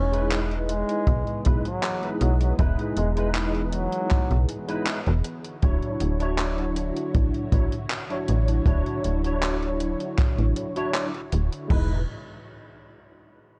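The slap-like FM bass stands out most, snappy and metallic in its attack, sitting up front with tube saturation while a filter sweep runs across it through most of this woozy, faded vaporwave excerpt at 79 BPM in E major. A barky tine electric piano, lightly overdriven through a combo amp with ensemble chorus and analog delay, carries the accompaniment over chords moving from Emaj7 to Dmaj9 at 5.2 seconds and back to Emaj7. A soft string machine hangs in the background with silky, slow-attack sustained chords, colored by phaser, chorus and 12-bit sampler grit. A mellow, distant flugelhorn with light vibrato and tape echo plays a brief classical-style solo melody that ends at 4.5 seconds, while a gated 80s digital drum machine supplies overdriven crash cymbal, handclaps and hi-hat. A punchy, airy kick enters at 1.1 seconds, and the whole is wrapped in dark, small-room cassette-tape production.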